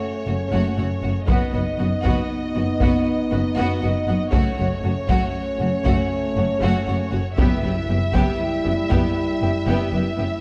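Dark and epic in a moderate scoring-stage reverb, this brief build from an epic orchestral film cue sets lush, vibrato-laden violins on the melody over a focused second violin line, background violas, close cellos and rich double basses, while mellow French horns hold tight sustained chords, dry heavy-stick taiko drums enter at 1.3 seconds, and a very quiet timpani note sounds at 7.4 seconds.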